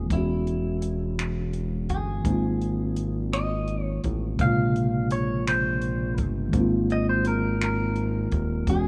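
A clean, twangy electric guitar carries the melody over a mellow tine electric piano and a fat, detuned analog bass from the opening of this slow, tender six-eight R&B passage in Ab major at 56 BPM. A compact cocktail drum kit of finger snaps, hi-hat and punchy kick, dark and rolled-off on top with a small-room character, joins at 0.1 seconds, while the chords move from E69 through Ab69 and Bbm9 back to Ab69. Studio reverb frames a rough home-demo mix, with the sawtooth bass sitting up front.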